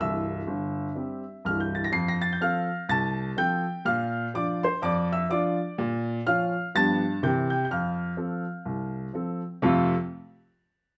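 A clear, open baby grand piano carries this playful, swinging stride jazz excerpt on its own, playing from 0.0 to 9.9 seconds before the clip cuts off from a longer piece. Set up front, the piano rings with long sustain and covers a broad span of the keyboard, from C1 up to C7. The eighth notes carry a relaxed swing, giving the playing a buoyant, easygoing lilt. The harmony moves from C to F and Bb, darkens briefly on Bbm, then passes through G7 and C7 before settling on F. A moderate studio reverb adds a gentle sense of room around the instrument.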